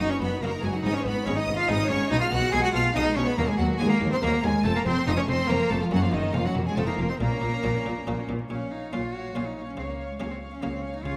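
A close, intense solo cello leads this stormy, driving excerpt from a baroque-style concerto movement, its clear, bowed vibrato line sitting up front from its lower register into the high tenor. Around it, the strings play in a steady 3/4 at 141 BPM: a lush symphonic violin section carries the melody high above, and a studio violin section with a soft attack adds a second line in the middle. A dark viola section and a buff-stop harpsichord supply accompaniment, the harpsichord muted and lute-like, dry and close-miked yet very quiet. Distant chamber cello and double bass sections anchor the bass with warm, expressive bowing. The harmony settles into Bb minor from 3.4 s and moves through minor chords with brief turns to F and Gb, and a new section begins at 8.5 s before the clip cuts off at 11.2 s. A wet recital-hall reverb surrounds the ensemble, giving the bowed strings a resonant, spacious glow.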